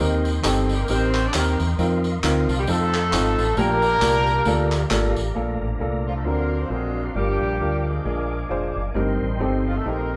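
Uptempo gospel with a jubilant, uplifting spirit and a swung feel, cut from a longer piece and played live by a band in one room with a moderate large studio reverb. A woody upright piano, slightly detuned and intimate with audible action noise, supplies the accompaniment, while a soft, flute-like tonewheel organ holds sustained chords through a slow rotary speaker with chorus vibrato. A dark, round fingered electric bass sits up front with a direct, amped tone. Tambourine and handclaps, with egg shaker and a group clap, give a compressed, saturated lift until 5.3 seconds, and from 0.7 seconds a mellow horn section carries the melody with light vibrato and octave doubling, sounding distant and roomy. At 5.4 seconds the music moves into a new section as a tight French horn section joins in the background with sustained chords, over changes that pass from Bbmaj7 through D7alt and Gm7 to Eb6/G.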